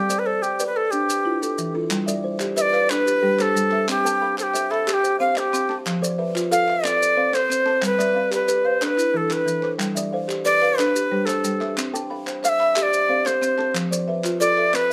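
Rippling and warm, this excerpt from a longer piece follows a southern African traditional, mbira-style interlocking cycle in 12/8 at 122 BPM, counted in dotted quarters with a straight feel in G mixolydian. A bright Native American-style cedar flute carries the melody up front, its pure, wooden tone showing vibrato, a crisp chiff on the attack and lifted highs, set in plate reverb. Beneath it, a buzzing kalimba plucked with the fingertips gives a mellow, hollow-box ring, while a buzzing marimba played with medium mallets adds woody, full, close-miked arpeggios on hardwood bars, touched by tape echo. Grainy maracas enter at 0.1 seconds, and a crisp group handclap with a live-room feel joins at 1.9 seconds, as the opening section gives way to a longer second one. The harmony cycles through G, Em, C and F, and the whole excerpt sits in a moderate small room.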